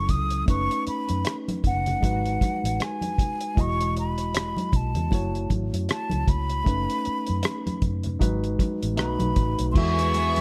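A breathy, mellow silver flute carries the melody over a barky, lightly overdriven tine electric piano and a round, foam-muted fingered bass in this smooth 1970s-style soul fragment at 78 BPM in E major with a gentle 16th-note swing, joined almost at once by a dry, cloth-damped drum kit with a tight kick and dark cymbals and soft-handed congas in the background, as chords like B9/F#, G#m7 and Emaj9 pass before a rich, reedy chamber violin section enters at 9.7 seconds just ahead of the closing Eadd9.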